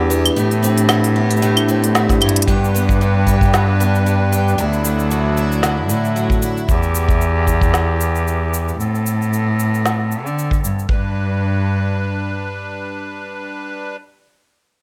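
Folktronica at 114 BPM in G major with a lightly swung sixteenth-note feel, playful and hopeful, cut from a longer piece. A ringing, close-miked vibraphone with slow motor vibrato plays a second line while a shimmering, octave-doubled twelve-string acoustic guitar picks bright arpeggios, both treated with delay and plate reverb; an up-front, nasal bowed cello carries the bass, and a punchy, brushed acoustic kick drum joins an electronic kit of woody snare, crisp hi-hat, claves and shaker. The vibraphone gives way at 2.5 seconds to a sweet, reedy accordion holding sustained chords through a filter sweep, the guitar stops at 7.2 seconds, and the cello plays on until 12.4 seconds over chords moving from Amadd9 through G, Dadd9 and Em.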